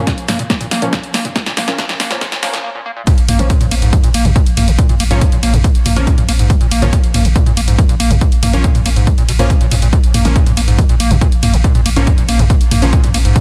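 A straight 4/4 pulse drives this hypnotic peak-time techno cut, taken from a longer piece, with a punchy, layered electronic kick sitting up front and an analog drum machine adding hi-hats, ride cymbal, snare and toms, its hats, toms and cymbals pumping against the kick. The opening seconds are a build-up: a drum fill runs under filter sweeps on both the overdriven acid bass and the rave stab, then a brief break at 2.6 seconds gives way to the drop at 3.1 seconds. The acid bass carries the riff throughout, its squelchy, gritty square-wave tone resonant and saturated, colored by analog chorus, sidechain pumping and dub echo. Above it, aggressive detuned sawtooth stabs sound thick, evolving and bright, treated with chorus, built-in reverb, cassette tape grit, pumping and dub echo. From 3.2 seconds a deep, round sine sub bass holds a single low note beneath everything else, warmed by tube saturation and a low-pass filter and pumping with the kick. 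The mix sits in light reverb under a dense, heavily limited modern master.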